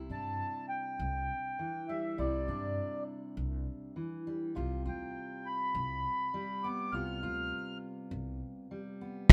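A fingerpicked steel-string acoustic guitar with a full-bodied jumbo tone opens this warm, nostalgic acoustic folk excerpt together with a woody pizzicato upright bass. A reedy, mellow accordion carries the melody up front from 0.1 s to 7.8 s, with a slow beating in its sound, over light reverb. At 9.3 s a vintage brush drum kit arrives, with a punchy kick and medium-tuned snare placed up front in a small, pumping room.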